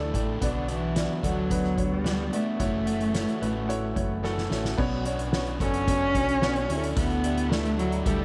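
A dark, bowed cello with vibrato carries the earnest melody from 0.4 s in this dramatic piano-driven pop piece, set over a clear, natural upright piano, an overdriven semi-hollow guitar riff, a round, punchy fingered electric bass and a big-room, soft-mallet drum kit with a fat snare and boomy kick that plays a fill at 4.2 s, heard in a light studio reverb.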